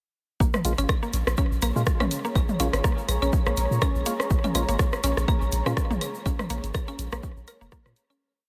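Hypnotic and sparse, this short minimal techno piece runs on a swung 4/4 groove that opens on a Bbm7 chord at 0.4 seconds, when nearly every part enters at once. An overdriven, punchy electronic kick drives a four-on-the-floor pulse up front, while a deep sine sub bass with a pitch-drop attack rolls through a staccato groove with sidechain pumping. A woody, round mallet-like synth pluck repeats a 5-step loop that drifts against the bar, carrying chorus and a diffuse ambient delay, and sparse, hollow organ stabs echo in the background, moving one chord shape in parallel. Around them, a grainy tube shaker plays hand-played sixteenths, an analog drum machine adds programmed closed hats and a rim backbeat, and a second electronic kit scatters clicks and blips of claves, rim and low tom in cross rhythm. From 1.7 seconds a dark, detuned sawtooth pad with slow attack and built-in reverb adds slowly shifting chords over the pulse, and the piece fades out from 5.6 seconds.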